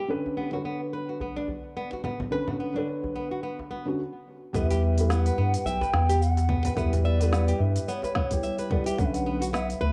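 A round, dark analog bass sits up front from 4.5 seconds, pumping under a hypnotic organic downtempo groove at 108 BPM with a swung 16th feel, moving from B minor add9 to E minor. A felt-muted upright piano, soft and intimate with audible action noise, opens alongside fingerpicked flamenco guitar arpeggios through analog delay, while a filter sweep shapes the piano until a brief break at 4.0 seconds. A djembe cracks in the background, an organic electronic kit with woody snare, smooth hats, congas and shaker joins at 2.0 seconds, and a tight electronic kick arrives with an airy bass bansuri melody carrying vibrato and 12-bit grit, all in a dry, gritty small room.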